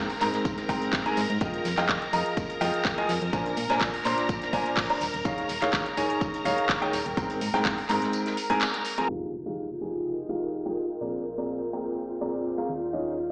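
A straight 4/4 groove at 125 BPM drives this bittersweet, energetic piano house excerpt in F minor, where a woody, up-front upright piano riff with tape echo leads over shimmering, warbling string-machine violin chords, a round, dark FM bass, a house kit of handclaps, metallic hi-hats and shaker, and a faint acoustic kit of hi-hat, snare and tambourine, all of these except the drums pumping to the sidechain, while a punchy electronic kick runs from 0.5 to 7.8 s, a distant electronic impact lands at 9.1 s as filter sweeps move across the piano and strings, and a cloudy granular pad drifts in at 9.8 s, the whole mix colored by plate reverb, a bare stone room and a small-speaker tone.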